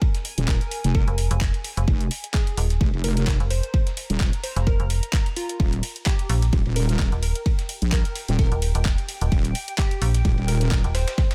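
Bass house with a bouncy, aggressive swing, driven by a punchy, tape-warm kick and a garage kit of handclaps, bright hats and ride, with a gritty, very quiet sampler-style snare and ride beneath, as a heavy, saturated wobble bass and a metallic FM bass entering at 1.1 seconds pump up front against a glassy wavetable pluck with chorus and delay, over a blurred granular cloud pad in the background, moving from F minor to E-flat at 5.6 seconds in this short cut from a longer piece.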